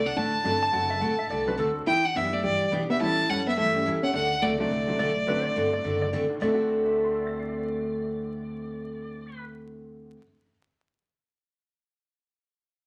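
Country western swing at a swinging, cheerful 211 BPM in D mixolydian, cut from a longer piece, with a clear, focused bowed fiddle up front on the melody and a dark, hollow-body jazz guitar on a second line until both stop at 6.1 s, over a woody, growly pizzicato upright bass, a bright, full-bodied picked acoustic guitar and a detuned, jangly vintage honky-tonk upright piano, while a twangy slide lap steel adds its own second line and returns at 5.0 s, all set in wet studio reverb with vinyl crackle.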